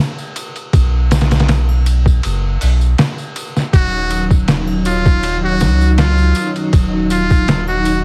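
Lightly swung trip hop drums from a gritty, pitched-down sampler-style kit, with a thumpy kick, hi-hat, ride and medium-tuned snare, sit up front beside a deep, round dub sub bass, while a tambourine and triangle stay in the background, and at 3.7 s a buzzy, metal-muted trumpet with light vibrato and tape echo enters together with full-bodied, chorused string-machine cellos, the dry mix pressed into a heavily compressed radio sound flecked with vinyl crackle for a smoky, hypnotic fragment.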